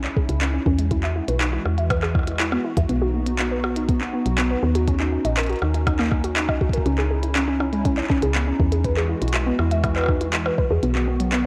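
A warbly, dusty pluck carries detuned arpeggios through a lo-fi haze of chorus, 12-bit sampler grit, tape echo and a filter sweep. It sits over hollow, flute-like pad chords and a round, woody FM bass that stays up front, while the chords cycle through C#madd9, Eadd9, B and D#m7. This cerebral, melancholic IDM fragment, cut from a longer piece, is driven by a glitchy kit of handclaps, clicky hats and echoing percussion blips plus a soft electronic kick from 0.2 to 10.7 seconds, all softened by light reverb and a worn, warbling cassette-tape pitch drift.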